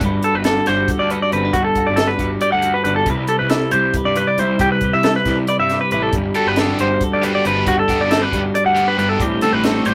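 Up-front, sparkling clean electric guitar arpeggios ride over a compressed, warm twelve-string electric guitar in this intricate, playful math rock and midwest emo excerpt in 7/8 at 274 BPM in G major, moving through Gmaj9 and Cmaj7. Beneath them sit a growly fuzz bass and a dry compact cocktail drum kit with a high-tuned snare and punchy kick, and a double-tracked, overdriven stack guitar riff arrives at 6.3 s, the whole captured as a rough rehearsal-room recording with moderate booth ambience.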